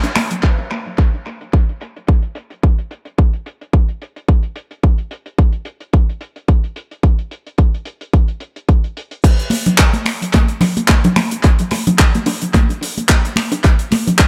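A studio reverb gives this echo-heavy nu-disco excerpt a glossy, spacious sheen, sensual and sleek at 109 BPM in 4/4 with a light swing on the sixteenths. A dry, up-front 70s drum kit with dark, filtered cymbals, hi-hat, finger snaps, handclaps and a crash carries tape echo throughout, and a punchy, layered electronic kick sits firmly on top from 0.4 seconds. Close, hard-handed bongos and congas flick in at the opening accent, then return with tape echo at 9.5 seconds, just after the drop arrives at 9.2 seconds.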